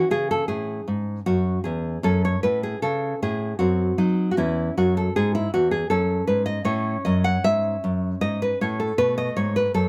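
A solo nylon-string guitar opens this brief, radiant baroque-style classical dance in C# minor, fingerpicked in 3/4 at about 78 BPM with a rubato feel and tuned slightly low to A4 = 438 Hz. The guitar sits up front with a warm, acoustic tone, finger squeaks and a light reverb, ranging from E2 to F#5 across the roughly 10-second passage. Its harmony moves from C#m through F#m, Cdim/Gb and F#m7 before settling on B5 as the fragment breaks off mid-piece.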